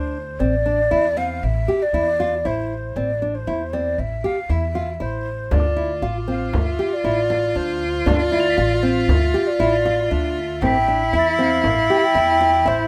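Restless and pensive, this contemporary chamber piece moves in an uneven 5/4 at 118 BPM, cut from a longer work and resting on an Amadd9 chord under light reverb. A breathy, hollow flute with vibrato and audible chiff carries the melody from a distance over fingerpicked nylon-string guitar arpeggios and a woody, dark pizzicato upright bass up front. At 5.5 seconds a clear, intense bowed cello adds a close second line, joined by a small, bright frame drum and shimmering, bell-like crotales struck with hard rubber mallets, both tucked in the background.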